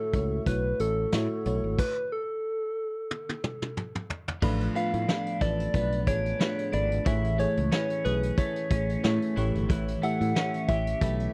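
A dry, close recording in a 1970s studio style frames this nostalgic, uplifting 1980s-style pop excerpt at 91 BPM with a light sixteenth-note swing, where a round, gentle FM synth lead with vibrato, chorus and slapback echo carries the melody over a lush, dreamy FM electric piano with a soft pad layer, a direct fretless electric bass and a punchy, dark-cymbaled brush drum kit up front, until a stop at 1.8 s gives way to a drum fill from 3.1 s and, at 4.4 s, a bright, twangy twelve-string electric guitar riff with lush chorus enters as the harmony moves from Dm6/A through Amaj7 to A7.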